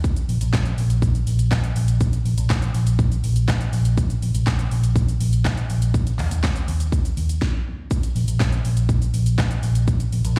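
Upbeat and summery, this dance-pop excerpt runs at 122 BPM in a straight 4/4, cut from a longer piece. A vintage muted fingered electric bass sits up front, dark, round and foam-muted, with an amped tone and sidechain pumping as it moves between Bb1 and Eb2. Beside it, an electronic, layered pop drum kit delivers a punchy kick, a fat snare and metallic hats, along with handclaps and shaker, all re-recorded in a large room and placed forward in the mix. The groove plays as a full drop, breaks into a brief stop from 7.4 to 7.9 seconds, then returns with the same material through to 10.4 seconds. The overall sound is like a live gig heard through a venue's PA, with only a touch of recital-hall reverb.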